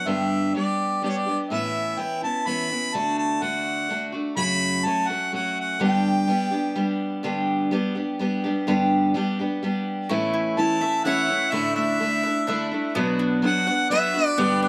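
A straight three-four pulse carries this hopeful, nostalgic acoustic folk excerpt. A picked steel-string guitar sits up front throughout with audible finger squeak, while a distant, roomy harmonica sings the melody in a classical style, pausing at 7.0 seconds and returning later. At 10.1 seconds a double-strung bowl-back mandolin enters with arpeggios, joined at 10.6 by a soft, woody kalimba second line in the background, both touched with slapback echo, all under light reverb in an open-air setting.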